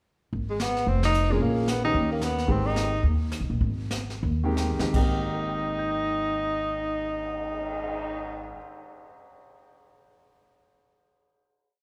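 Small-group swing and bop jazz in Ab major, a short and sophisticated piece in swung 4/4 at a brisk 156-224 BPM that slows between 2.5 and 4.9 seconds before settling into a sustained final chord. Up front, a tenor saxophone with light vibrato and scooped notes states a punchy bebop-style theme. Beneath it, a woody, thumpy pizzicato upright bass plays in two, a brush kit adds snare sweeps, dark cymbals, a high-tuned snare and a boomy kick, and a vintage grand piano comps in syncopated drop-2 voicings with long sustain, all set in a moderate recital-hall reverb.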